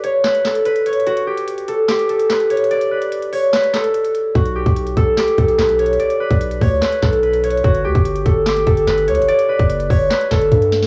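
A dark, hard-hitting trap excerpt in B minor at 146 BPM in a half-time feel opens with a bright, fingerpicked concert harp melody ringing up front through cassette tape and tape echo over a produced electronic kit of hard-clipped kick, sharp snare, crisp hats and handclaps, before a deep, mellow 808-style sine bass with transformer saturation arrives at 4.4 seconds under the Bm and Gsus2 chords, and a drum fill closes the cut at 10.5 seconds in a dry home-cassette sound.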